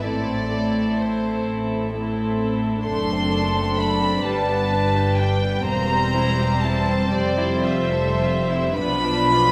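Up front, a violin section carries the melody with soft-attack sul tasto bowing and a pure, floating, smooth top, over a second violin line, a viola section accompaniment, a cello section bass set in the background and an intimate, close double bass section with light vibrato, in this elegiac, melancholic slow romantic movement for string orchestra in A minor and 6/8 at 34-44 BPM in dotted quarters, played with rubato and bathed in wet scoring stage reverb across its 9.5 seconds.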